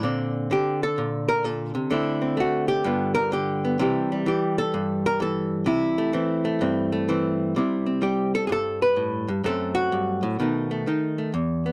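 A clean, dark archtop guitar opens at once, picked and played alone through a miked amplifier, sitting up front in a dry, close studio sound with a 1970s character. This is solo jazz in C major at 128 BPM in 4/4, with a swung eighth-note feel that gives the short excerpt, cut from a longer piece, a sophisticated yet playful mood. The hollow-body tone is compressed, and the guitar ranges from E2 up to B4. Over the first 7.5 seconds it takes a solo across harmony moving from Bbmaj9 through Dsus2 and G7 to C6. A new section follows from 7.5 seconds to the end at 11.7 seconds, where the chords shift to F#dim and then B7.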